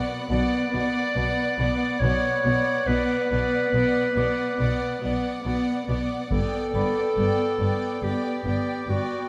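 A solo clarinet sits up front in this tense, ominous suspense cue, its warm, roomy classical tone carrying a second line that is distant yet prominent. Around it, chamber violin sections bowed with vibrato share the texture: one carries an expressive, close melody while another holds a second line, and a third, higher violin part lingers in the background until 5.8 seconds. A focused viola section fills in the accompaniment, with a lush symphonic cello section and a smooth-topped chamber double bass section bowing the low end from 0.3 seconds. A vibraphone struck with hard mallets adds a metallic, ringing tone in the background. At 6.3 seconds solo taiko drums hit with hard sticks break in, their compressed, saturated thud lasting only briefly, as the harmony moves from B minor to G over the unsettled 5/4 metre. A moderate concert hall reverb surrounds this brief cut from a longer film score.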